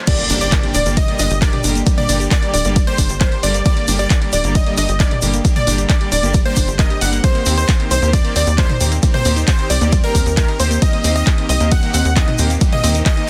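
Uplifting trance at 134 BPM in G minor, this excerpt from a longer piece sits squarely in a drop, its emotional, bittersweet mood carried by a move from Gm to Eb6 at 7.2 seconds. A detuned supersaw stab leads the melody, airy and evolving, pumping against the sidechain and trailed by tape echo, while a clear baby grand piano adds a very quiet second line in the same register. Beneath them, a bright string section holds intense, vibrato-rich sustained chords, and a lush unison pluck spins arpeggios in the background, both breathing with sidechain pumping. An overdriven, dry electronic kick sits up front with a high-pass filter, joined by a punchy analog drum machine re-recorded in a small room for crash, handclaps, hi-hat, ride and toms, plus a grainy, band-limited egg shaker. A tight, driving sequencer bass with a sawtooth and square-wave bite enters at 0.3 seconds, and a very quiet electronic impact marks the opening until 1.9 seconds, all set in digital ambience within a dense, heavily limited modern master.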